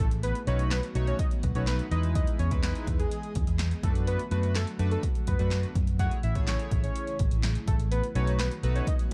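Dance-pop in 4/4 with an upbeat, euphoric mood, cut from a longer piece. A fat, detuned sawtooth lead with a sub octave, vibrato and chorus carries the melody, its delay and sidechain pumping giving it a mellow lift. Underneath, a glossy, retro chorused polysynth built on pulse and sawtooth waves, with filter sweeps, joins at 0.5 seconds to fill out the harmony, while an airy, breathy pad sits in the background holding sustained chords with a slow attack and long release. A round, foam-muted electric bass sits up front, pumping with the sidechain alongside a punchy analog drum machine of kick, snare, handclaps and hi-hat, its snare, clap and hats touched by a short room. A barely audible downlifter sweeps through near the start, and the chords move from B7 through Emaj7, D6/F#, Amaj7 and back to B7 in a dark, dry production with little reverb.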